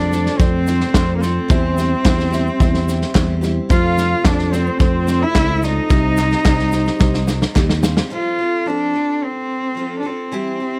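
A rich, nasal bowed cello carries the melody up front in this uplifting indie folk excerpt in F major at 109 BPM, joined by a warm trumpet second line with light vibrato, a dark, slightly detuned upright piano, and a shimmering, octave-doubled twelve-string acoustic guitar picked in the background. A fingered electric bass and a loose, gritty drum kit with a punchy kick sit forward, with a grainy egg shaker and crisp group handclaps behind them, and a drum fill at 7.0 seconds leads into a return to F at 8.1 seconds. After that point only the cello and guitar carry on to 10.8 seconds, all captured in a dry, close 1970s-style studio sound.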